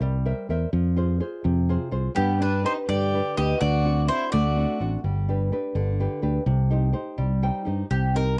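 Moving in 6/8 at 84 BPM, this lively, romantic Italian folk serenade in C minor, cut from a longer piece, rests on a woody, fingerpicked nylon-string guitar with old strings and a dark, round fingered electric bass up front, while a bright, double-strung bowl-back mandolin carries the melody from 2.2 s beside a pure, floating, distant bowed violin line, the guitar slipping in a fill at 7.2 s before the mandolin returns at 7.9 s, with a cassette-tape tint on the guitar, mandolin and violin and light reverb on the home recording.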